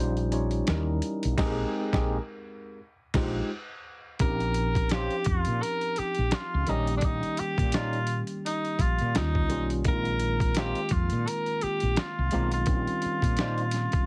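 A swung 85 BPM groove in 4/4 drives this late-night, soulful R&B and neo-soul excerpt, where a gritty, pitched-down boom bap sampler-style drum kit with a thumpy kick and a woody, round fretless electric bass sit beneath a worn, slightly out-of-tune tine electric piano, a band accent and break land between 1.4 and 4.2 seconds, and from 4.2 seconds a clear tenor saxophone with light vibrato and scooped notes carries the up-front jazz-style melody while a slightly broken-up, twangy electric guitar through a small old amp soon adds a second line, the whole mix pressed into a heavily compressed radio sound with light reverb.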